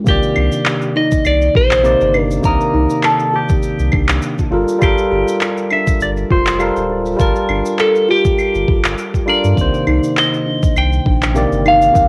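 A lightly swung 4/4 groove of gritty, thumpy electronic kick and tape-softened shaker, claves and handclaps sets an easy pace for this wistful, smooth sunset chillout excerpt, which moves between Cm9 and Gm9. A bright, barky tine electric piano and a dark, clean picked electric guitar sit up front, the guitar's melody colored by phaser and tape echo, while a round, deep sine sub bass with transformer saturation holds the low end. In the background a soft, buzzing, woody kalimba plays short arpeggios from 0.4 seconds, all set in light reverb with the character of a home cassette recording.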